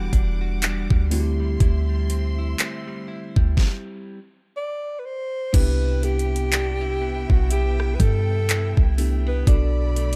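A worn, slightly out-of-tune tine electric piano opens this late-night contemporary R&B fragment, joined at once by lush bowed symphonic strings holding sustained chords, a direct-recorded clean electric guitar picking compressed arpeggios with slapback echo, and a deep, boomy 808-style bass sitting up front. A smooth, produced R&B drum kit arrives at 0.1 seconds with a knocking kick, deep snare, metallic hi-hats, rim clicks, handclaps and crash cymbal, setting a slow 61 BPM groove in 4/4 with swung sixteenths. The harmony moves from Em9 to D9sus4, and a stop from 3.6 to 5.5 seconds breaks the flow before the music turns to Cmaj7 and later Bm7. At 4.6 seconds a breathy, whispered alto saxophone takes the melody, close-miked and intimate, with vibrato, scooped notes and its own slapback echo, lending a jazz-tinged, longing voice. The mix is soaked in digital ambience, with the bass and drums forward beneath the mellow keys and strings, and the recording is cut from a longer piece.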